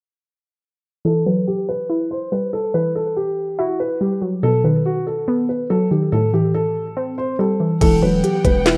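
Drill hip hop in E harmonic minor at 142 BPM with a half-time feel, this dark, ominous excerpt opens at 1.0 seconds with a warbling, detuned, lo-fi sawtooth pluck run through chorus and a filter sweep, joined at 1.1 seconds by a mellow, boxy concert grand piano melody with digital delay over an Emadd9, B7 and Am7 progression, before lush bowed strings with vibrato, a growling, buzzy 808-style bass and an up-front drill kit with a knocking kick, sharp snare, crisp hats, handclaps, crash and 12-bit sampler grit all arrive at 7.8 seconds, the whole set in digital ambience with the rough feel of a home demo mix.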